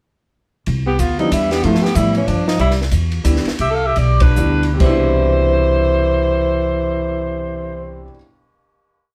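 A short, sophisticated small-group jazz piece in a swinging three-four lilt opens at 0.7 seconds with a woody, thumpy upright bass walking up front, alongside a compact cocktail kit whose sticks work a ride pattern over dark cymbals, a high-tuned snare and a punchy kick, all dry in tone. The alto saxophone quickly takes the melody with a clear, vibrato-touched bebop theme that returns, while the breathy tenor saxophone shadows it with a harmony line mostly in sixths, adding scooped notes and a smooth top. An intimate grand piano comps in syncopated, rootless voicings, its long sustain and audible action noise giving the group a warm, natural texture. The band slows from 2.6 seconds, hits a shared accent at 4.2 seconds, and settles onto a held final chord from 4.8 seconds. The whole group sounds set further back in a moderately reverberant studio room.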